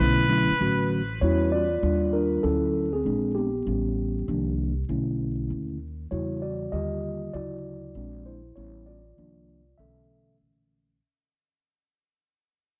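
A breathy, nasal muted trumpet with tape echo sounds a brief phrase over a clean tine electric piano and a woody, thumpy pizzicato upright bass, then drops out at 0.9 seconds as the electric piano takes a solo from 1.2 seconds through a fade-out in this smoky, mellow jazz-hop cut at a swung 98 BPM, framed by light small-room reverb, gritty hardware grain and vinyl crackle.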